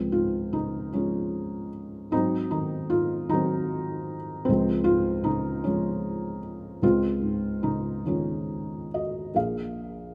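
A felt-muted upright piano opens alone in Db major, playing a calm, tender classical miniature in 6/8 at roughly 46-52 BPM, counted in dotted quarters, with a freely breathing rubato. The thick felt gives the tone a soft, dark, mellow character, and the instrument sits close and intimate, with its action noise clearly audible beneath the notes. Its range reaches from Bb1 in the bass to F5 above, framed by a light reverb. The harmony moves from Db to Ab7 and back, settling onto a lush Dbmaj9 at 6.8 seconds before turning at 9.3 seconds to a Bb7 chord with its third omitted. The piano plays through to 10.1 seconds, where this passage, cut from a longer piece, breaks off.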